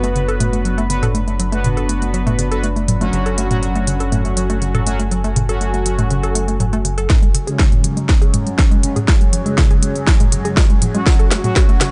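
Hypnotic and driving, this melodic techno excerpt sets a warbling, lo-fi pluck arpeggio under a filter sweep against bold, brassy synth stabs, a moody pad and a round, deep bass, all pumping through sidechain over a drum kit with a cracking snare and smooth hats, until at 7.1 seconds the bass drops out, a heavy, up-front kick enters with a drum fill for a build-up, and a resonant drone with moving overtones joins at 7.8 seconds in the background.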